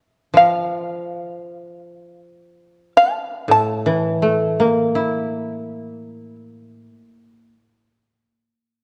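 A bright, buzzing shamisen opens this austere, solitary excerpt of Japanese chamber music, its percussive plectrum-plucked melody sitting up front in a high register until 6.4 seconds. A mellow, woody koto played with fingerpicks enters at 0.3 seconds with a low accompaniment that continues to 7.9 seconds, the two unfolding in free time and tuned slightly below standard pitch. The dark production places both instruments close, within the moderate reverb of a concert hall.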